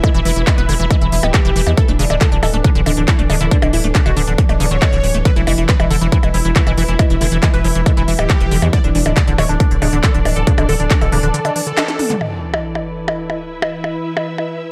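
A driving, straight 4/4 psychedelic trance groove at 138 BPM opens on a punchy, up-front electronic kick and a layered techno kit with a cracking snare, smooth hats, handclaps, toms and percussion blips, while a round, deep analog bass with tube saturation anchors the low end and a squelchy, resonant acid bass riff ripples above it. A thick, bold unison lead with phaser, dub echo and sidechain pumping carries the melody, over an evolving, morphing wavetable pad and a veiled, con sordino string section in the background, as the chords move between E5 and D5. After a break, a band accent near 11.8 seconds and a drum fill, an impact lands at 12.2 seconds with a background downlifter, zap and sub drop, and a filter sweep runs across the ambient pad through to 14.7 seconds.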